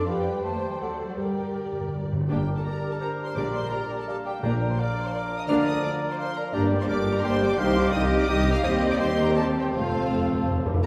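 In a rubato triple metre, this lively and graceful classical-period orchestral fragment sets a lush, vibrato-rich violin section singing high above a second, more distant violin line, a dark, very quiet cor anglais, a pure, soft-attacked silver flute, a vintage-toned clarinet and an expressive viola section with portamento, all over mellow sustained French horn chords and a focused, smooth-topped foundation of cellos and double basses, while close, dry calf-headed timpani fill in from 1.2 seconds and a distant, roomy trumpet adds stabs from 2.3 seconds within the reverberant scoring-stage sound heard from further back.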